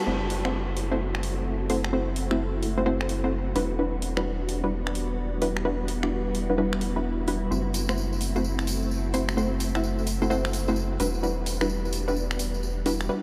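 Swung 16ths at 129 BPM drive this bouncy, soulful two-step UK garage piece, where electronic finger snaps and metallic hi-hats sit beneath punchy, bright, detuned sawtooth chord stabs carrying chorus and ambient delay, a deep, round sub bass sits up front, and silky, mellow string-machine chords shimmer with phaser and ensemble chorus, all in a dreamy mix soaked in cathedral reverb as the harmony alternates between F#m7b5 and Em9, while a ringing, fingerpicked harp melody glints in the background only until 1.2 seconds and a jingly, close tambourine joins at 7.5 seconds.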